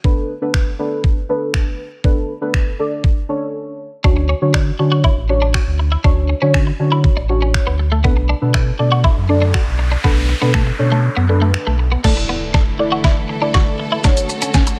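Summery and upbeat, this dance-pop excerpt moves at 120 BPM in a straight 4/4, built on a detuned 8-bit digital drum machine whose thumpy kick, medium-tuned snare, hi-hat, shaker, finger snaps and crash sit up front from the start. A deep, mellow chord stab with a soft, dark tone colored by chorus and phaser rides beneath it over Bm7 and Dmaj7 harmony. After a brief break, at 4.0 seconds a clean, compressed twelve-string electric guitar riff arrives with analog chorus, joined by a full sine-and-triangle sub bass with an added octave that pumps with sidechain. A noise sweep rises from 8.9 seconds, and the kick drops out for the final second before the shift at 12.0 seconds. There the harmony moves to Asus4 and back to Dmaj7 as a lush, bowed studio string section enters with vibrato, a drum fill and impact drive the build-up, and the whole mix stays dry.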